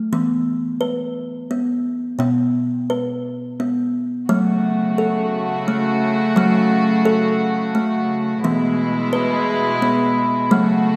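A gently lilting 3/4 pulse at 87 BPM, with a light swing on the sixteenths, carries this meditative, hypnotic world piece, cut from a longer work and tuned to A4 = 439 Hz. A kalimba opens alone, spinning out up-front arpeggios between B2 and B4 in short, woody plucks with a hollow-box body and a dark, smooth thumbnail attack. At 4.3 s a chamber string section joins with sustained bowed chords between B2 and F#4, its gut-string, period-style tone rich and slightly reedy and placed just as close as the kalimba. The harmony moves from an open E5 through a chordless stretch to F#m, then settles on E at 8.4 s. A concert hall reverb with a 2.0-second decay wraps the whole texture in a spacious, lingering glow.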